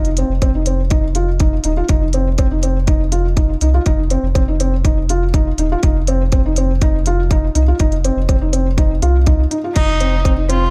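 Melancholic and intimate, this short cut from a longer piano and strings electronica piece moves at 122 BPM in a straight 4/4, with a soft, thick-felted upright piano riff through digital delay over a deep, round sub bass with tube saturation and sidechain pumping, smooth hats and crash from an organic electronic kit in studio reverb, a tight, up-front electronic kick entering at 0.4 seconds, and a dark, bowed cello with vibrato arriving at 9.8 seconds, all in a small room ambience with lossy compression artefacts as the harmony shifts from F5 to Cm/F.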